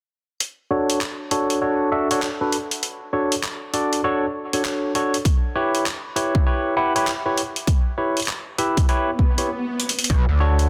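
Glitch hop at 99 BPM in B minor with a playful, funky swing, this short cut opens on a pitched-down, sampler-style boom bap kit of handclaps and hi-hat, joined moments later by barky, lightly overdriven tine electric piano stabs moving from a rootless Bm7 to Em6, run through overdrive, sidechain pumping, a low-pass filter sweep and dub echo. A punchy, layered electronic kick joins at 5.3 seconds, and near the end an electronic swell, a brief stop and a drum fill set up a saturated, wave-folded sawtooth bass that lands at 10.1 seconds. The sound is dense and heavily limited, with a moderate plate reverb.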